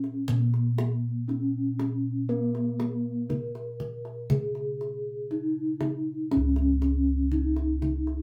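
A ringing bronze metallophone carries the melody up front, its paired tuning producing shimmering beats under soft padded mallets in a boxy small room, in this serene Javanese gamelan excerpt at a slow 60 BPM in straight 4/4, tuned to A4 = 436 Hz. Round, full bossed gongs struck with padded beaters hold the bass close-miked and dry, while a tight kendang played with hard hands adds percussion. The band plays live together in one room with moderate studio reverb, and the passage is cut from a longer piece.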